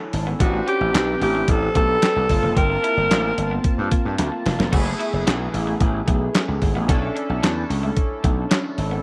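Danceable and late-night, this early-eighties boogie funk excerpt moves at 111 BPM in a straight 4/4, driven by a crisp 8-bit drum machine with a thumpy kick, handclaps, hi-hat and crash cymbal, and an up-front, overdriven slap bass that sounds gritty and punchy. A glossy, chorused polysynth with pulse-width modulation and a filter sweep sustains chords moving from Am11 through Gm11 and F#m11 to Bm11, while a very quiet, twangy electric guitar at the edge of break-up picks a riff. A raspy alto saxophone with vibrato and slapback echo plays a short, roomy solo melody from 0.4 to 3.6 seconds, a drum fill arrives at 4.2 seconds, and light digital reverb surrounds the mix.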